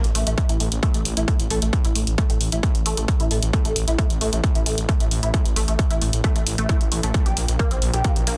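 A distorted, overdriven kick drum punches up front from 0.4 s in this intense, industrial burst of driving peak-time techno, riding over a thick, menacing detuned saw bass with sidechain pumping, an analog-toned electronic hi-hat that also pumps, and a squelchy, resonant blip-pluck riff coloured by phaser, ring modulation, ensemble chorus and tape echo, all set in a dry, dense, heavily limited master.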